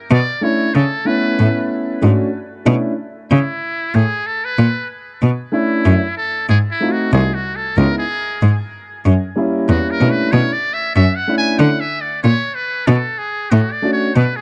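A buzzy, thin trumpet with a metal mute takes a scooped, vibrato-laden jazz solo from 5.2 seconds, trailed by dub echo, over a focused bowed cello bass line and a dark, smooth baby grand piano in this mellow, cool jazz-hop cut at 94 BPM in B dorian, with a swung 16th-note feel and an echo-heavy studio reverb around the mix.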